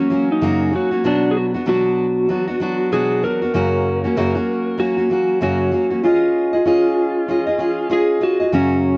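A relaxed 96 BPM groove in 4/4 with a gentle 16th-note swing carries this carefree, easy-going pop excerpt in F# major, where a warm, full-bodied fingerpicked jumbo acoustic guitar sits up front under a dark, slightly broken-up, compressed electric slide guitar melody, both playing throughout the 9 seconds over chords moving from F# to Bm and back before landing on C#add9, all wrapped in light reverb and the worn, warbling pitch drift of old cassette tape.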